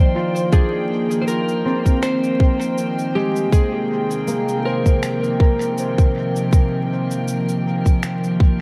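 At 80 BPM in 4/4 with a light 16th-note swing, a soft layer of electronic shaker and finger snaps carrying studio reverb and dub echo enters at 0.4 seconds, joined at 0.5 seconds by a tight, tape-warm electronic kick drum that sits up front. This short ambient dub passage in F dorian feels spacious and deep, moving from Fm7 to Cm7 at 3.5 seconds. A dark studio string section holds sustained chords with light vibrato and a reedy, gut-string, period-style tone, sounding both distant and forward in the mix. A bright, ringing concert harp plays thumb-plucked arpeggios softened by a low-pass filter and trailed by dub echo. Over this, an electric slide guitar carries the melody with a dark, slightly broken-up, compressed tone, its phrases repeating through dub echo. The echo-heavy mix has light reverb and a bed of vinyl crackle.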